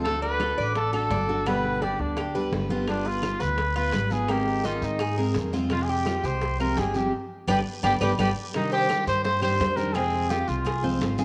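A distant, vibrato-rich trumpet carries the melody up front in this danceable Cuban son and guajira piece in C minor at 170 BPM, over a full-bodied picked dreadnought guitar, metallic double-string tres arpeggios, a dark, thumpy pizzicato upright bass, very quiet bright congas and tight high-tuned bongos, woody claves and a raspy guiro entering at 2.9 seconds, with a band accent and drum fill before the section repeats at 8.5 seconds, set in a wet echo-chamber reverb.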